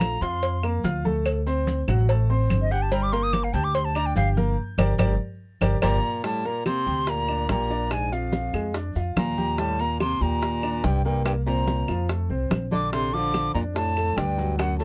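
An airy, hollow concert flute leads this sophisticated, driving Afro-Cuban jazz passage from the start, carrying a solo over a clear, open baby grand piano, a dark, woody pizzicato upright bass up front, and a percussion bed of ringing congas, round low-tuned cowbell and bongos, woody vintage claves and grainy, mellow maracas. The band hits an accent from 4.6 seconds, capped by a drum fill, and at 5.8 seconds a breathy baritone saxophone with subtone and vibrato adds a low second line beneath the flute. The sound is close and detailed, with little reverb, and the passage is cut from a longer piece.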